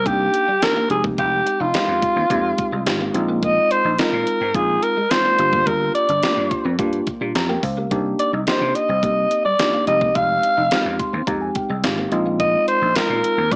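Early-eighties boogie funk with a late-night, funky mood, this short cut from a longer piece is carried by a growling alto saxophone up front, whose raspy, gritty solo melody is shaded with vibrato in a vintage pop style. Beneath it, a vintage slap bass sounds amped, growly and punchy, while a worn, slightly out-of-tune tine electric piano supplies direct accompaniment over the Cm9, Fm9, Bb9sus4 and Gm7 changes, adding fills at 7.1 and 10.7 seconds. A clean, picked electric guitar riff sits in the background, thickened by an ensemble chorus. A detuned 8-bit digital drum machine with a sampler-style, tape-warm character plays a thumpy kick, fat snare, hi-hat and handclaps, all bathed in gated reverb and re-recorded in a small room. The whole mix carries light reverb and a small-speaker sound.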